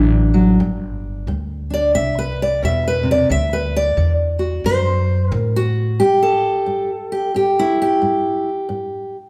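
This acoustic country blues excerpt, cut from a longer piece, moves at 89 BPM in 4/4 with a swung eighth-note feel that sounds soulful and gritty. A bright, fingerpicked steel-string acoustic guitar sits up front carrying the melody, taking a solo from the opening through 6.0 seconds over chords moving from D to G5, then C and back to D. Beneath it, an upright bass played pizzicato on gut strings adds a woody, thumpy low end, also close in the mix. The bass drops out at 6.0 seconds, when the harmony falls away and the guitar carries on alone until the clip ends at 9.3 seconds. The duo sounds as if playing live together in one large studio, wrapped in a generous, wet reverb that lets each note ring into the room.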